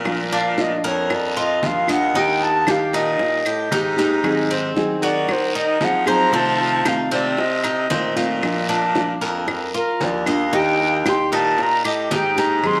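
A relaxed, danceable slice of Cuban son and guajira in Bb major, moving at 114 BPM in a straight 4/4, cut from a longer piece. A concert flute carries the melody from 0.3 seconds, soloing with a pure, straight, tongued tone touched by tape echo, while a Cuban tres weaves mellow, metallic arpeggios from its doubled strings beneath it. An up-front nylon-string guitar fingerpicks a bright, classical-style accompaniment, and a raspy baritone saxophone takes the bass role with a gritty, punchy vibrato that sits at a distance in a roomy space. Round, low-tuned bongos played with soft hands, woody claves and a raspy guiro enter at 0.1 seconds and stay in the background. The chords pass through Bb, Eb, Ab7 and F7 before returning to Bb and Eb, and a wet echo-chamber reverb wraps the whole in a small room.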